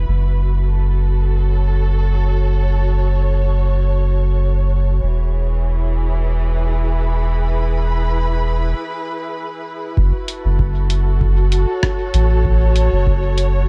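A 4/4 pulse at 97 BPM, with a light swing on the sixteenths, carries this deep, hazy ambient dub piece in F# minor, cut from a longer track. A muted studio string section, veiled and bowed con sordino with vibrato, holds sustained chords through a low-pass filter, moving from F#m to E and back to F#m. Beneath it, a round, soft dub sub bass with a triangle and square wave tone sits up front, sustaining low notes throughout. After a break at 8.7 s, a very quiet, overdriven analog kick enters at 10.0 s, re-recorded in a small room. A lo-fi sampler-style kit follows at 10.3 s, adding compressed, muffled, tape-warm hi-hat and rim click, with filtered hats in a small room ambience. The production is dark and warm, with little reverb.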